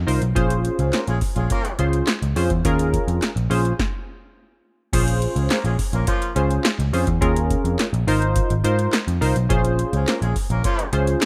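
A rough home-demo mix with light reverb frames this late-night, danceable slice of early-eighties boogie funk, cut from a longer piece and moving at 105 BPM in a straight 4/4 in Bb minor. A dry analog drum machine sits up front with a deep kick, punchy snare, metallic hi-hats, handclaps and crash cymbal, carrying a tape-warm edge. A dark, foam-muted picked electric bass with a round, amped tone anchors the low end, while a funky polysynth comp blends sawtooth and square-wave colours with a filter sweep, fast attack and a mellow chorus sheen. A distant, roomy horn section with octave doubling and light vibrato adds three brief, punchy entries across the passage. The harmony cycles through Bbm7, Eb9sus4 and Bbm9, then Bbm7, Eb9sus4 and Ab6 in the second pass, with a stop breaking the groove between 3.8 and 4.9 seconds before the section repeats.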